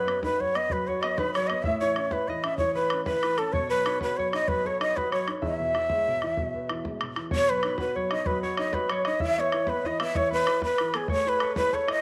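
Set in a rolling 12/8 with a straight feel, this cheerful Celtic slide moves at a lively dance pace, a short passage cut from a longer piece. A breathy, end-blown bamboo shakuhachi carries the tune up front, close-miked and tongued, with a gentle vibrato coloring its warm tone. Beneath it a concert harp plays a fingerpicked second line in the background, its ringing strings trailed by tape echo. A dark upright piano supplies mellow, woody accompaniment from the low register, while a boomy, band-limited bodhran with an open, vintage tone joins at 0.1 s to drive the pulse. The harmony circles through B, A, B7 and E before closing on an Asus2, and a moderate echo chamber reverb gives the ensemble a natural studio space.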